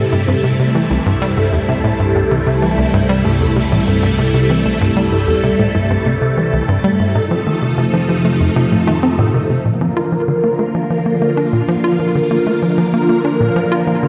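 A luminous, cosmic stretch of sequencer-driven space music at 96 BPM in 4/4 opens with a tight, punchy sequencer bass riff through analog delay, swirling, bright string-machine chords with ensemble chorus and phaser up front, and very quiet, lush, detuned unison pluck arpeggios, while an evolving, chorused pulse-width-modulated analog drone hums in the background from 0.7 to 9.6 seconds before the harmony moves from F major to Bb major at 9.7 seconds, the mix bathed in an echo-heavy chamber reverb.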